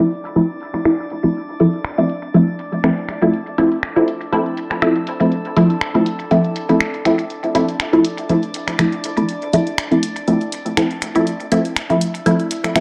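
A lightly swung sixteenth-note groove in 4/4 comes from a punchy analog drum machine, its finger snaps and hi-hat re-recorded in a large room and dulled by low-pass filtering and dub echo, sitting low in the mix. Up front, a muted, detuned chord stab built from sawtooth, pulse and sine waves with a wave-folded edge plucks out a Dm7 with a fast attack and short decay, colored by phaser and dub echo. Behind it, a quiet glass-harmonics texture drifts with calm, sustained sine tones and bright, glassy overtones, treated with chorus and its own reverb. Filter sweeps run across both the drums and the stab through the whole passage, which all three parts play together from 0.0 to 12.8 seconds. Wet spring reverb and digital ambience give this deep, nocturnal dub techno excerpt an echo-heavy sound.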